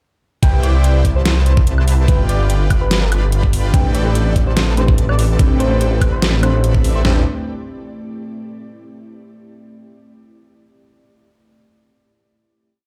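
Emotional and bittersweet, this short future bass piece opens straight into a half-time drop, where an up-front detuned saw bass and a dubstep drum kit with a knocking kick, deep snare and floor toms hit hard, while a second kit adds metallic hat rolls and woodblock. A fat, bold polysynth holds open-voiced chords with syncopated pushes that throb under sidechain pumping, as a round, keys-like FM lead with phaser and vibrato sings short answering phrases, and a mellow, very quiet airy pad drifts in at 1.1 seconds. At 3.7 seconds a dark, gentle pluck joins in the background with a filter sweep, and the drop gives way to a final chord at 7.0 seconds, all carried in a large studio reverb.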